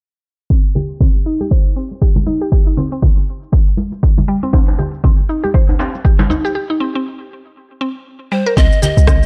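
Earthy and driving, this afro house excerpt moves at 119 BPM in C minor with a swung sixteenth feel, built on a punchy, up-front electronic kick, tape-warm shaker and rim click, and bright, close congas, while a woody, FM-toned synth pluck plays arpeggios under chorus, analog delay, cassette tape character, sidechain pumping and a long filter sweep. A deep, live-room djembe joins from 4.5 s, a break arrives at 6.6 s, and near the end a breathy bamboo pan flute with vibrato and chiff sounds a brief melody from 8.3 s, shortly before a boomy, mellow 808-style bass enters at 8.6 s. The whole recording has a dry, gritty, low-passed small-room sound.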